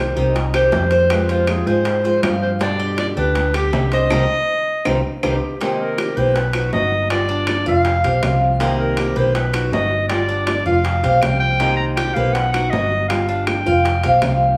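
Cuban son in the guajira vein, this danceable, sultry excerpt moves in a straight four. A clear, classical-style clarinet carries the solo melody up front, beside a dark, round hollow-body electric bass that is picked and amped. Beneath them, a bright fingerpicked flamenco guitar supplies accompaniment while a Cuban tres plays arpeggios on metallic double strings, some doubled at the octave. Bongos with soft hands and low tuning and ringing metal-shell timbales join in the background at 0.4 seconds, with woody claves just after, the bongos and claves carrying a band-limited vintage tint. From 4.1 seconds the band hits an accent, with a drum fill entering at 4.5 seconds, and at 5.6 seconds a new section opens on a cycling progression of minor seventh, dominant seventh and suspended chords, the ensemble sitting in a moderate large-studio reverb.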